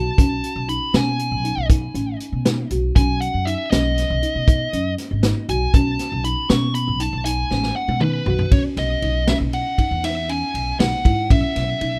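A dark, fuzz-distorted lead guitar solo with plate reverb opens this bright, intricate progressive instrumental in 11/8 at 237 BPM (eighths) in B mixolydian, over mellow, round soft-mallet marimba arpeggios with plate reverb and tape echo and a woody pizzicato upright bass, while a punchy, up-front vintage drum kit with a rolled-off top and small-room sound enters at 0.2 s and plays a fill from 7.5 s to 8.5 s, where the solo ends and the harmony moves from B9 and C#sus2/B to Bsus4, all in a rough home demo mix with light reverb cut from a longer piece.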